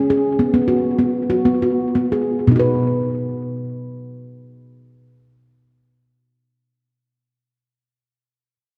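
A solo handpan opens this dreamy, calm fragment of meditative world music, its ringing, smooth nitrided-steel tones played with the fingertips up front in B major pentatonic at about 55-70 BPM in 6/8, slowing over the first 2.5 seconds before settling onto a B chord, all bathed in tape echo and a wet echo-chamber reverb that lingers around the dark, warm production of the 7.1-second excerpt.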